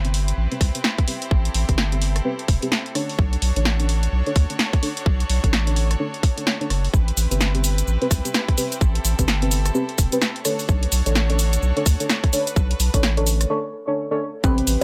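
A swung two-step garage groove at 128 BPM opens this soulful, late-night UK garage excerpt, with a punchy, tape-warm analog drum machine of bongos, cabasa, hi-hat, rim click and snare, joined at 0.6 seconds by a tight layered kick, a saturated sub bass pumping beneath deep, mellow chord stabs that carry chorus, phaser, delay and a filter sweep, and a clear chamber violin section holding biting, earthy chords between Am9 and Bm9, before a break at 13.5 seconds and a soft-mallet vibraphone ringing a lone B4 in the background at 14.4 seconds.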